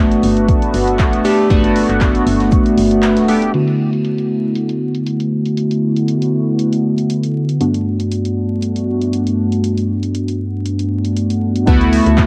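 The chorused polysynth leads this sunny, soulful deep house excerpt at 118 BPM in D major, moving between Gmaj9 and D69. Its glossy, retro stabs are built from pulse and sawtooth waves with pulse-width modulation and a filter sweep, and they sit up front for the whole clip. A woody, round FM bass with tube saturation and sidechain pumping plays through the opening and returns at 11.7 seconds. It is joined by an overdriven, layered electronic kick that drops out briefly with a band accent at 3.0 seconds. A dry, punchy analog drum machine supplies crash, handclaps and low-pass-filtered hi-hats, with a light swing on the sixteenths. Beneath it all, a very quiet, tight metal kit adds airy hi-hat, shaker and a high-tuned snare in the same stretches as the bass, and the whole mix carries a moderate booth ambience with the grain of a home cassette recording and vinyl crackle.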